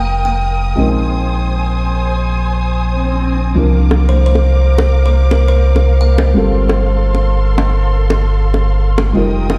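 This excerpt of soulful, lush liquid drum and bass at 172 BPM opens with a boxy, dark felt-muted upright piano carrying dub echo, a bowed symphonic string section with vibrato and a smooth top, a deep, up-front sub bass with octave, and a brief woody kalimba pluck, also with dub echo. An electronic swell sits in the background from 2.9 seconds, tight high-tuned bongos enter at 3.9 seconds, and the bright, ringing kalimba melody returns until 6.4 seconds over chords moving from F9sus4 through Bb9sus4 and C9sus4 to G9sus4. The mix sounds as if played through a big sound system in a bare stone room, with light reverb and small room ambience.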